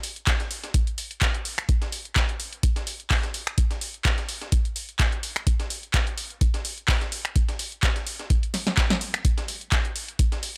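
A trippy, raw house groove at 127 BPM in 4/4, this short cut from a longer piece rides a swung sixteenth feel. A deep analog kick sits up front from 0.3 seconds, while a punchy analog drum machine supplies finger snaps, handclaps, hi-hat and a tape-warm snare in a short room. Beneath them, a quieter, compressed breakbeat sampler kit adds high-pass-filtered hi-hat and a medium-tuned snare re-recorded in a small room, and the whole mix stays dry and gritty with transformer saturation.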